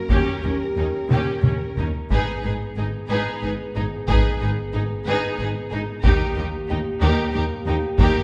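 Heavy-sticked taiko drums sit close and up front in this relentless, epic orchestral film cue in 6/8 at 61 BPM and G# harmonic minor, with a drum fill from 1.1 to 2.1 seconds. Behind them, dark French horns hold sustained chords while a woody violin section carries the melody in the background. A second, soft-attacked violin line and a distant, focused viola section fill the middle, and rich cellos and smooth double basses anchor the bass. The harmony moves from D#7 to G#m at 2.1 seconds and later settles on D#, with the ensemble set in the wet reverb of a concert hall.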